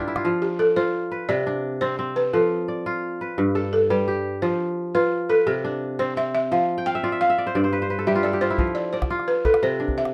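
A woody, buzzing balafon carries the melody through this hypnotic West African string and xylophone piece, soloing from 0.2 seconds to the end. Its soft rubber mallets sound dry and boxy, as if played in a small room. Beneath it, an up-front kora rings out bright, crisp fingerpicked arpeggios across a broad range, with a fill between 6.8 and 8.6 seconds. A deep, close calabash sounds once near the start and returns from 8.6 seconds. The music moves in a steady 12/8 at 115 BPM in F lydian, over a gently shifting harmony that settles on Cmaj9. Light reverb gives this short cut from a longer piece a warm, traditional feel.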